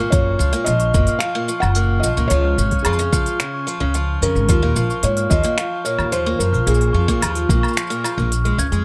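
A delicate folktronica excerpt opens on a shimmering, octave-doubled twelve-string acoustic guitar picking bright arpeggios with audible finger squeak, alongside a soft glockenspiel played with rubber mallets on a bell-like second line, both carrying tape echo. A felt-muted upright piano with thick felt, audible action noise and vintage 12-bit sampler grit carries the intimate, dark-toned melody over a woody pizzicato upright bass placed up front. A soft electronic kick and an organic electronic kit of finger snaps, crisp hi-hats, shaker and woodblock, both tape-warm and re-recorded in a small room, keep a straight 4/4 pulse through Gbmaj7, Db, Ebsus2 and Bbm7 under light reverb, and the kick falls away near the end.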